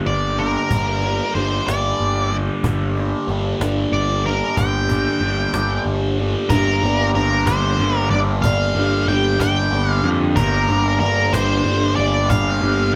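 Heard through a moderate large-studio reverb, this psychedelic rock excerpt captures a band playing live in one room, moving at a slow 62 BPM in 6/8 in G minor with a mysterious, hypnotic mood and a shift into a new section at 6.5 s. Up front, a bright, double-tracked fuzz guitar with phaser picks out a low riff, a dark octave-fuzz lead carries the melody up high, and an overdriven, fuzzy electric bass holds the bottom end. A snappy, close and dry cajon with snares keeps time, while a soft, flute-like tonewheel organ sustains chords through a slow rotary speaker in the background.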